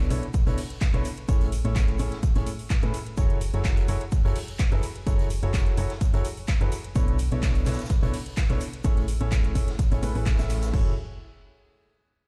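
Energetic yet bittersweet, this piano house excerpt sits inside a drop, with a lightly swung 4/4 groove and chords cycling through Bm11, Amaj7 and F#m9. A clear baby grand piano carries the riff with long, open sustain, coloured by tape echo and sidechain pumping. Beneath it, a round, dark FM bass with a fast attack adds tube saturation and the same sidechain pulse. The punchy electronic kick sits up front from 0.3 seconds, while a layered house kit brings crash and ride cymbals, metallic hi-hats and handclaps. Further back, a gritty acoustic garage kit of hi-hat, shaker and snare adds a small-room texture with a rolled-off top, its hats and percussion high-passed and ducking. The mix sounds as though played on a big sound system in a bare room, wrapped in large studio reverb.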